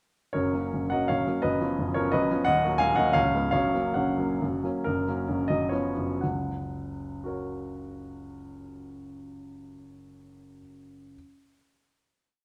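Rustic and proud, this short romantic triple-time dance for solo piano moves in 3/4 with dotted rhythms and a flexible rubato feel, its tempo ranging between 109 and 185 BPM in F# major. A clear, polished baby grand sits up front, playing from 0.3 seconds to the end, with a tune in thirds and a single-line melody over an octave bass with chords. The harmony stays close to home, moving from F# through C#9/F#, D#m and C#7 before settling back on F#. After the opening dance passage, the music slows from 3.0 seconds into a brief coda, then closes on a sustained F# chord from 6.2 seconds. A wet recital hall reverb surrounds the present piano tone, lending the complete little piece a sense of space.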